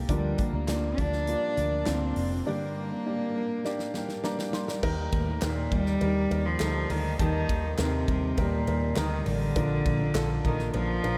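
A straight 4/4 pulse at 101 BPM drives this anthemic, piano-driven pop passage, cut from a longer piece, as a small-room country kit with punchy kick, snare, hi-hat, ride, crash and handclaps supports a round, foam-muted electric bass and a dark, woody upright piano moving through Bb/D, Gm, Eb and Bb. A bowed, sul tasto cello carries the melody up front with a soft attack and pure, floating tone, while a jumbo steel-string acoustic guitar with fresh strings and audible finger squeak picks a full-bodied riff through analog chorus in the background. A break arrives at 2.5 seconds, with piano and drum fills from 3.6 to 4.8 seconds leading into the next section, and the whole mix is soaked in dreamy cathedral reverb.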